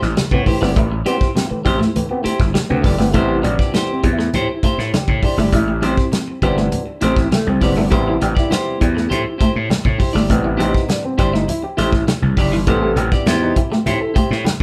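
Funk at 101 BPM in A minor, cool and driving, cut from a longer piece and played by a band live in one room with moderate studio reverb, opening on an Am7 chord. A gritty, growly slap bass with overdrive sits up front beside a tight, roomy soul drum kit, while low-tuned congas stay close and dry in the background and two twangy, picked clean electric guitars fill in: one plays accompaniment through spring reverb, and the other plays a compressed, scooped riff with phaser, tucked behind. An overdriven clav through a combo amp, stringy and percussive with auto-wah, plays stabs from 0.3 s and takes a solo from 3.1 s to the end.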